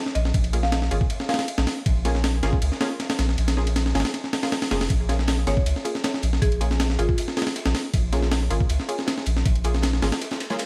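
Raw and dark, this drum and bass and jungle excerpt runs at 158 BPM in Bb minor over a single Bbm7 chord, driven by a compressed, pitched-up sampler breakbeat with a thumpy kick and high-tuned snare, a round, deep sub bass up front, muted detuned chord stabs with a filter pluck, chorus and dub echo, a woody, buzzing marimba melody with 12-bit grit and dub echo appearing in the background in two short phrases, a very quiet saturated second breakbeat kit joining at 4.9 seconds, all set in a small room with vinyl crackle.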